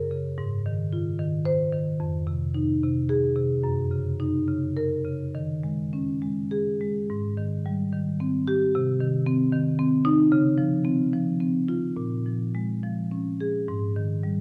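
Contemporary classical writing for solo marimba, this brief passage cut from a longer piece has a flowing, warm mood, moving in a lilting 6/8 with a rubato feel. Played with soft mallets on rosewood bars, the marimba sounds woody, round and mellow, sitting up front with a mid-forward presence across a range from F2 to C5. Its harmony drifts through rich extended chords, opening on Ab6 and passing through Fm7, Gb6 and Eb7sus4 before the second section begins at 7.1 seconds on Abmaj7. From there the progression moves through Cm, Dbmaj7 and Bbm7, settling onto an open Abmaj7(no3) at 13.7 seconds. A moderate recital hall reverb gives the instrument a gentle sense of space, and the tuning sits slightly below modern concert pitch at A4 = 435 Hz.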